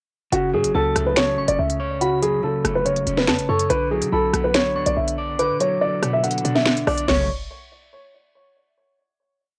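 A half-time drill beat of crisp skipping hats with fast rolls, a sharp snare layered with finger snaps, rim clicks, toms and crash drives this tense, dark hip hop piece, where an intimate, mellow baby grand piano loops an up-front melody with audible action noise, a slightly broken-up electric guitar repeats a pedal-note arpeggio in eighths, a punchy 808-style bass slides through long sub-bass notes, and a soft, warbling FM bell traces a sparse background counter-melody through chorus, phaser and analog delay, the lightly reverberant home cassette recording settling on a final chord at 7.1 seconds.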